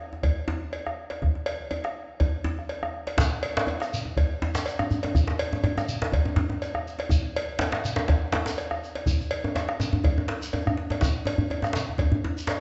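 A djembe struck with hard hands opens this earthy, powerful West African drum ensemble excerpt at 122 BPM in 4/4 with a light sixteenth-note swing, joined almost at once by a round bombo and a metallic cowbell, before a deep, up-front second djembe played with soft hands and a grainy, mellow, distant shekere enter at 3.2 seconds, with a drum fill at 10.5 seconds, all set in a moderate recital-hall reverb with a dark, rolled-off top end.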